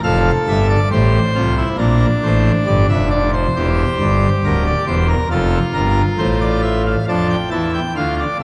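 A pipe organ on full registration, its mixtures drawn, carries this brief, elegant excerpt of a baroque-style three-part fugue in steady, straight 4/4. The sound is majestic and brilliant, with an audible chiff at the front of the pipes and a baroque voicing spanning D1 to A5. The organ sits up front, yet it is bathed in a long church reverb of 3.2 seconds, and the overall production leans dark. The harmony moves in stately steps from F through Bb and C7/E before settling back on F. At 7.1 seconds the music turns to a new passage on D minor, and the fragment breaks off at 8.4 seconds.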